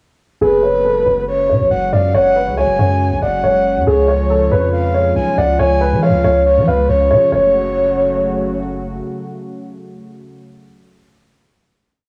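Set to a half-time drill pulse at 139 BPM in F# harmonic minor, this short, dark and ominous hip hop piece opens at 0.4 s with a looping baby grand piano melody, its mellow, intimate tone carrying audible action noise through cassette tape colour, low-pass filtering and analog delay, while a breathy, flute-like synth lead with vibrato adds a sparse, repeated counter-melody above it. Beneath them, a smooth detuned sawtooth pad holds chorused chords and a deep, up-front 808-style bass lays long sub-bass notes with pitch slides, as a filter sweep runs through the breakdown until 7.3 s. The harmony moves from F#sus2 to C# before settling on a final F#m chord, the pad sustaining alone until 10.4 s in a lightly reverberant home cassette sound.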